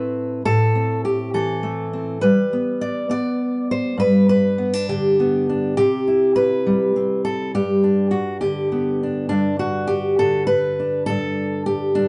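This folk piece for solo fingerstyle guitar is gentle and peaceful, moving at an unhurried 68 BPM in a straight 6/8 in G major, tuned to A4 = 441 Hz. A fingerpicked steel-string acoustic guitar carries everything from the first moment to 12.1 seconds, ranging from G2 up to D5 with a dark, concert-style tone and finger squeaks along the strings. The harmony opens on Am, settles onto G, moves through C and back to G, then shifts into a second section at 9.3 seconds that rests on an open Gsus2. The guitar sits up front, wrapped in a wet studio reverb with a short 0.6-second decay, captured as a live performance in a single room. The top end is capped at 10.8 kHz, and the clip is taken from a longer piece.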